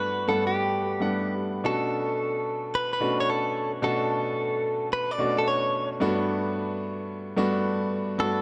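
A clean, picked electric guitar carries the melody up front in this slick, bouncy R&B excerpt, its compressed, direct tone trailed by analog delay, at 110 BPM with a swung sixteenth-note feel in B minor. A polished concert grand piano accompanies throughout, reaching from deep bass into its upper register with a short sustain, as the harmony moves from Gmaj9 to Bm9 at 1.6 seconds and back to Gmaj9 at 6.0 seconds. A moderate plate reverb soaks the mix in a dreamy haze.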